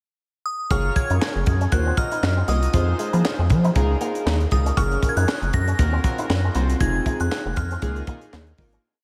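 Slick and danceable, this short early-eighties boogie funk piece moves at 118 BPM with a swung sixteenth feel, opening on a brief pickup before a glassy, crystalline FM bell melody enters at 0.5 s and the rest of the band joins at 0.7 s over a Gbmaj9, Ebm69, Fm7, Db69 progression. A rubbery, saturated square bass sits up front with a fat syncopated boogie line beside a tight acoustic drum kit whose high-tuned snare is layered with handclaps, while a glossy chorused polysynth pushes rootless chords and a clean, twangy envelope-filtered guitar picks a muted single-note riff in the background. A huge ambient reverb soaks the mix in a dreamy haze before the piece fades out from 6.8 s.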